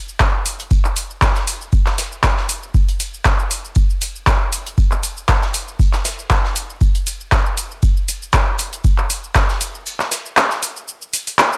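A swung 4/4 groove at 118 BPM drives this hypnotic house passage, cut from a longer piece, with an up-front analog drum machine laying down handclaps, metallic hats and shaker from the start. A deep, tape-warm electronic kick pushes underneath until it stops at 9.5 s. Further back, a tight acoustic kit adds filtered hi-hat, shaker and a medium-tuned, mid-forward snare with a big-room character, all set in a small room ambience.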